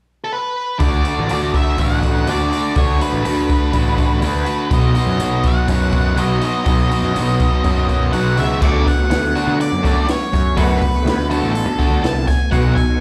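An octave-fuzz lead guitar carries the melody from the very start, its distorted, fuzz-laden tone colored by slapback echo and tape echo as it sings between A4 and A5. This jangly, wistful indie rock passage, cut from a longer piece, moves at 123 BPM in a straight 4/4. At 0.8 seconds a crunchy, up-front overdriven guitar riff with slapback echo arrives together with a growly, fuzzed electric bass and a compact cocktail drum kit with a punchy kick, high-tuned snare and dark cymbals, as the harmony settles on D6 before shifting to B. At 8.6 seconds the chords return to D6 and a second riff guitar joins through a small old amp, slightly broken-up and lo-fi, washed in ensemble chorus, slapback echo and tape echo. The whole performance sounds like a live gig heard through a club's PA, with only a little reverb from the room.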